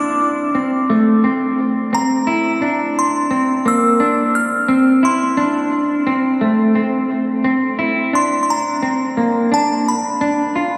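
A clean, up-front semi-hollow electric guitar plays arpeggios with lush chorus and tape echo while a glassy FM synth bell carries a bright, crystalline melody above it, in a blissful, ethereal dream pop fragment at 87 BPM in C mixolydian, moving through C7, Fmaj7 and Bm and soaked in a 6.0-second cathedral reverb before it cuts off at 10.8 seconds.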